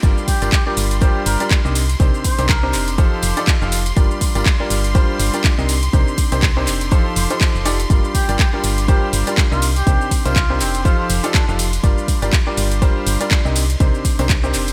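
Bittersweet and soulful, this piano house excerpt moves at 122 BPM in G minor with a swung sixteenth feel, cycling through Gm7, Cm9 and F13 while a clear, slightly worn baby grand piano riff with audible action noise and delay sits present in the mix, pumping against the sidechain along with a dark, round FM bass and lush, bright bowed strings held in the background. A punchy, layered electronic kick drives the groove beneath a house kit of handclaps, metallic hi-hats, ride cymbal and shaker, with a very quiet, close and dry tambourine adding detail. A soft, veiled cup-muted trumpet with light vibrato and delay drifts in from a distance at 0.3 s and again at 8.1 s, all framed by light reverb and a bright 1980s-style digital production.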